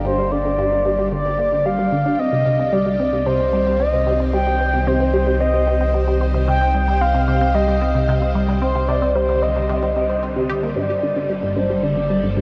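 A straight 4/4 pulse at 112 BPM drives this hypnotic, mysterious passage of sequencer-driven ambient space music, cut from a longer piece, where a juicy, squelchy resonant blip pluck with ring modulation, phaser, 12-bit sampler grit, shimmer reverb and delay sits up front from 0.1 s over a deep, round sine sub bass, while a mellow, horn-like synth lead with vibrato, chorus, shimmer reverb and delay carries the melody, and a swirling, vintage string machine with ensemble chorus and phaser slowly fades in across all 12.4 seconds beneath chords moving from Gmadd9 to Cm and back at 10.8 s, the whole mix bathed in a huge 7.7-second reverb and the worn, warbly pitch drift of old cassette tape.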